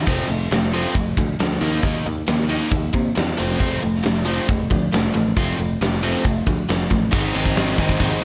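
Confident and swaggering, this short classic rock cut at 136 BPM in straight 4/4 drives an overdriven, double-tracked electric guitar riff with a bright, scooped edge over a growly, foam-muted picked bass and a big acoustic drum kit with a fat snare, punchy kick, crash and hi-hat up front, moving from F through Eb5 and back to F before shifting to Ab at 7.1 seconds, all in a small room with light reverb and a top end that stops short of sparkle.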